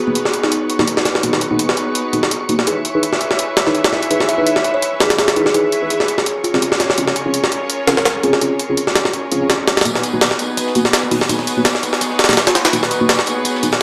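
Frenetic and raw, this drum and bass excerpt at 167 BPM in G# minor rides a gritty, pitched-up jungle sampler kit with a thumpy kick and high-tuned snare up front, under dark bowed sul tasto strings, deep nasal chord stabs with chorus, dub echo and a filter sweep, an airy wind-like noise texture, and a woody kalimba heard at 0.0 and again from 4.3 seconds with 12-bit sampler grit, while a smooth, dark acoustic kit with tambourine joins in the background at 9.8 seconds for a build-up over chords moving from G#m7 through C#m7 and A#m7.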